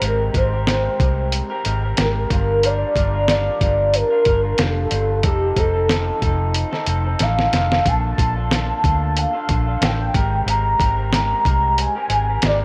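This dreamy, laid-back indie and bedroom pop excerpt features a velvety, detuned synth lead, bathed in lush chorus and slapback echo, singing the melody over an overdriven, compressed, sampler-style drum kit with a thumpy kick and fat snare, a round, foam-muted vintage electric bass, and a slightly broken-up, picked electric guitar through a small old amp with subtle chorus and warbly pitch drift, all in a gently swung groove with light digital ambience, a drum fill at 7.2 seconds, and chords moving through Abmaj9, Gm7, F7 and Bbmaj7.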